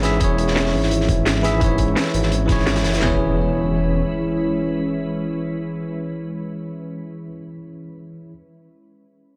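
Liquid drum and bass at 171 BPM in E major, this short excerpt has an uplifting, warm mood, built on a single E6 chord. A bell-like tine electric piano sits up front with a clean, direct tone and tape echo, playing accompaniment until 8.3 seconds, while a glassy FM pad holds ethereal, full-bodied chords with ensemble chorus, its own reverb and sidechain pumping, under a filter sweep through the first 3.0 seconds. A dark detuned saw bass rumbles deep and beating beneath them until 4.0 seconds. Three drum kits are layered: an electronic kit with a knocking kick and cracking snare, a second electronic kit in the background with bright hats, low-pass filtered, and a gritty, saturated acoustic breakbeat kit with a medium-tuned snare and rolled-off top, high-pass filtered, all stopping around 3.0 seconds. An electronic impact then sounds in the background from 3.0 seconds, and the whole sits in a lush digital hall ambience.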